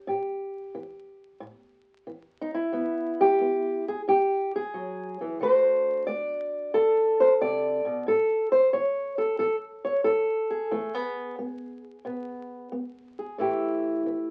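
Steeped in the crackle of a very old 78 rpm record and a moderate studio ambience, this swaggering, gritty acoustic country blues excerpt features a lone fingerpicked ladder-braced acoustic guitar, up front with a dark, woody, boxy tone from old strings, swinging its eighth notes through changes that move to E, D7 and A5 across a 14.3-second span.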